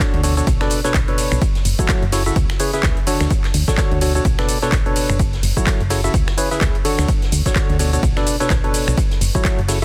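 Piano house at 127 BPM in F# minor with a swung, energetic yet bittersweet feel, this short cut has a hollow, up-front organ stab riff with subtle chorus, digital delay and sidechain pumping cycling through Bm9, F#m7, C#m7 and Dmaj7 over a punchy layered kick, a round, dark FM bass that pumps from 0.1 seconds, a tape-warm house kit of cabasa, finger snaps, handclaps, hi-hat and ride, and a very quiet small-room vintage kit of hi-hat and snare, all in a dry, dense, heavily limited modern master.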